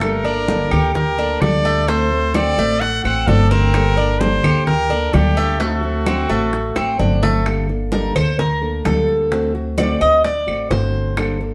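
A straight 4/4 groove at 129 BPM drives this danceable, nostalgic excerpt of Cuban son and guajira in G harmonic minor, with soft-handed congas and low-tuned bongos sitting in the background beside distant, woody claves, while a dark, growly pizzicato upright bass and a fingerpicked nylon-string guitar carry the Gmadd9 to D7 changes. Up front, a clear, punchy trumpet with light vibrato sings the melody until 7.0 s, and a drum fill at 6.8 s hands the spotlight to the metallic, double-strung Cuban tres, whose picked arpeggios become a solo from 7.5 s. The band plays live together in one room, wrapped in a wet studio reverb.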